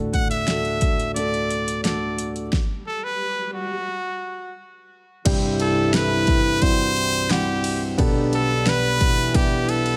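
Piano-driven pop at 88 BPM in a hopeful mood, this excerpt sets a dark, mellow grand piano with audible action noise up front beside a brilliant trumpet melody with light vibrato and scooped notes, driven by a punchy, layered electronic drum kit with a fat snare and metallic hats. The band stops from 2.5 to 5.3 seconds while an electronic swell rises in, and at 5.3 seconds the music moves to a new section where a French horn section adds a classical-style second line in the background and a lightly overdriven tonewheel organ holds very quiet sustained chords. Light studio reverb gives the whole a polished, intimate sheen.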